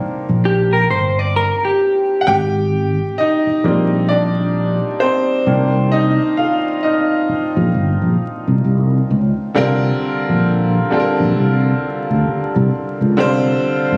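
A bright, woody upright piano takes a polished solo from 0.0 to 9.5 seconds in this smooth, sultry slow R&B excerpt at 66 BPM in C minor, with swung 16ths, over a growly, up-front fretless electric bass with analog chorus and a brief clean, picked electric guitar line with chorus from 0.5 to 2.2 seconds, moving through Cm9 and Abmaj9 before settling on Csus2 at 9.5 seconds, all heard through studio reverb and compression with the intimacy of a phone recording in the room and a layer of vinyl crackle.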